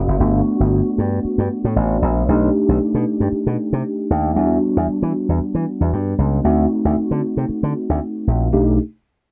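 A punchy, bright slap bass with an envelope filter sits up front beside a mellow tine electric piano treated with ensemble chorus in this short, dry, nocturnal and urban slice of polished 1980s jazz-funk pop at 115 BPM with a light sixteenth-note swing in B minor, the two parts playing together from start to finish over chords that move from Gmaj9 through B7alt, Em9 and D7b9 before returning to B7alt at 8.5 seconds.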